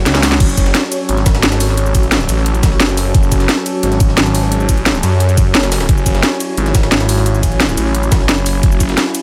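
This is a short excerpt of dark technical drum and bass at 175 BPM in F# minor, with a futuristic, shadowy mood that opens on an F# minor chord. A phased, detuned sawtooth bass sits up front, thick and swirling with a saturated edge, while a metallic, inharmonic FM drone holds eerie, nasal chords that warble through chorus and reverb. In the background, a granular cloud pad drifts in the upper register, blurred and mellow with a moving notch, and the drone, bass and pad all pump against the sidechain. A brief drum fill opens the passage as an up-front drum and bass kit with a cracking snare, bright hats, ride, crash and shaker comes in at 0.1 seconds, and an overdriven electronic kick with a knocking tone joins at 0.4 seconds. Beneath it, a very quiet, gritty breakbeat layer adds a compressed, high-tuned snare and hi-hat, and light digital ambience glues the mix together.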